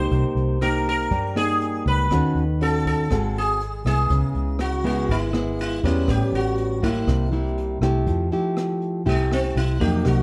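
A straight 4/4 bossa nova at 121 BPM sets a relaxed, romantic mood, with a brushed jazz kit sitting in the background, its boomy kick, hi-hat and rim clicks dark and rolled-off on top, while a vintage fingered electric bass sounds foam-muted, amped and round. Up front, a buzzing, shimmering sitar carries the plectrum-plucked melody over its sympathetic strings, beside a classical nylon-string guitar fingerpicked in accompaniment, with audible finger squeak, through jazzy changes such as Cm7, Ab7b9 and A9. At 8.1 s the sitar takes a solo over an Fmaj9, and moderate studio reverb places this short section, cut from a longer piece, further back in the room.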